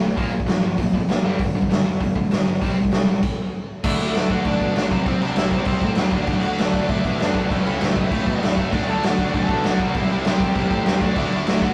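Energetic and rowdy, this punk rock excerpt at 197 BPM opens with two bright, distorted picked guitars churning a riff over Bb5, G5 and C5 power chords, with fuzzy overdriven bass tucked behind and an up-front raw garage drum kit of tight kick, medium-tuned snare, hi-hat and crash, until a stop at 3.2 s gives way at 3.8 s to a D major passage where a very quiet double-tracked crunchy guitar and a lo-fi overdriven lead melody join, one distorted guitar returning at 8.7 s, all in a rough rehearsal-room sound with light reverb.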